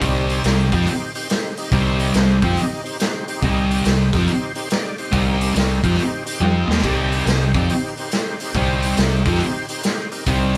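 Brooding and gritty, this short cut from a longer piece is blues rock in the power-trio and southern rock mold, swinging at 141 BPM in 4/4 and sitting on a single C minor chord. A thick, double-tracked fuzz guitar drives the riff up front, its picked tone distorted and warm. Beneath it, a vintage muted fingered electric bass holds the low end with a dark, round, foam-muted punch. The raw garage drum kit, also up front, brings crash, hi-hat, kick, snare and toms with a saturated, pumping small-room sound, dark cymbals and a rolled-off top. An overdriven tonewheel organ sustains full chords through chorus vibrato and a slow rotary speaker, breaking into a fill at 6.0 seconds, shortly before the drums add their own fill at 6.4 seconds. Light reverb gives the band the feel of playing live together in one room.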